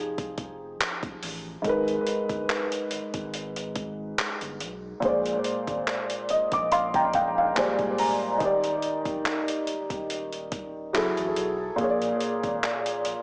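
Echo-heavy with a small-speaker sound and light reverb, this smooth, tender contemporary R&B excerpt moves at 71 BPM in 4/4 with a gentle sixteenth-note swing. An intimate, muted felt upright piano sits up front with tape echo, voicing chords such as Fm9, Abmadd9, Bb13 and Ebmaj7 and adding a fill from 5.9 to 8.4 seconds, while a deep, thick saturated sub bass sustains in the background. A gritty, compressed sampler-style drum kit enters at 0.2 seconds with a thumpy overdriven kick, hi-hat and handclaps, sounding as if re-recorded in a large room.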